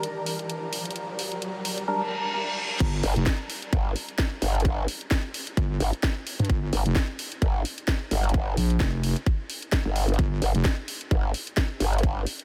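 Bass house with a swaggering, bouncy swing, cut from a longer piece and soaked in a dreamy, cavernous reverb. A build-up opens with an ethereal, detuned pad, an electronic riser, and a garage drum kit with a cracking snare and filtered hats and crash that runs throughout, then brings in a hollow, nasal organ stab under a filter sweep and a reverse cymbal. At 2.8 seconds the drop lands with a tight, up-front electronic kick and a heavy, saturated square-wave wobble bass, and at 3.0 seconds a bright, aggressive growl bass with overdrive and a formant filter joins, both basses pumping against the beat.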